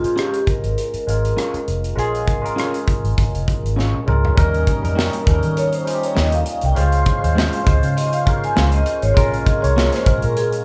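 Lush 1970s-style soul with a smooth, bittersweet mood, played live in one room with light reverb, where a mellow vibraphone on soft mallets carries the melody over a barky tine electric piano with phaser, a dark, round foam-muted bass and an airy, polished studio drum kit sitting up front. An electric guitar through a small old amp, slightly broken-up and compressed with harmonic tremolo, plays a riff from 0.2 seconds, and after a drum fill at 3.8 seconds a lightly overdriven tonewheel organ with slow rotary speaker enters in the background at 4.4 seconds as the vibraphone takes a ringing, metallic solo over the moving chords.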